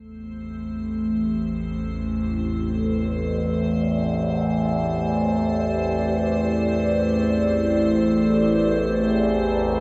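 A dark analog pad fades in on a held A minor seventh chord, its detuned, sub-octave voicing shimmering through chorus and phaser, while an overtone-sweeping drone settles in low and up front, wave-folded and resonant with moving overtones. Alongside them, a faint icy glass pad adds a crystalline, airy texture, gently bathed in chorus and its own reverb. This desolate, cavernous dark ambient drone drifts in free time through a wet spring reverb, and this short section is cut from a longer piece.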